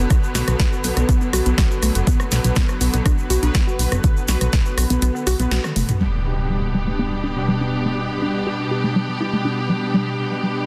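A dense, heavily limited modern master with light digital ambience frames this cinematic, melancholic stretch of melodic techno, cut from a longer piece. Lush bowed strings hold sustained chords beneath a warbling, lo-fi pluck arpeggio with 12-bit sampler grit, chorus and delay. Fat, brassy synth stabs with chorus and delay sound alongside them, and all three pump against the sidechain over a funky, sidechained analog bass, an overdriven, up-front electronic kick, a layered deep house kit with a punchy snare, and a grainy egg shaker in the background. The kick drops out at 5.0 seconds ahead of a band accent and drum fill, then at 6.0 seconds an electronic impact lands as the bass, kit and shaker stop, leaving the strings, brass and a filter-swept arpeggio to carry the chord change.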